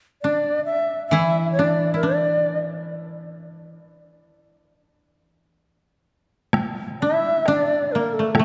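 Japanese traditional chamber music, austere and calm, in a rubato 2/4 around 64-69 BPM, where an airy, bright bamboo shakuhachi carries the expressive melody with vibrato and tongued chiff, while a mellow, woody, fingerpicked koto plays a second line throughout and a warm koto adds accompaniment from 1.1 to 3.8 seconds, before a close, heavy-stick taiko ensemble enters at 6.5 seconds, within a long church reverb.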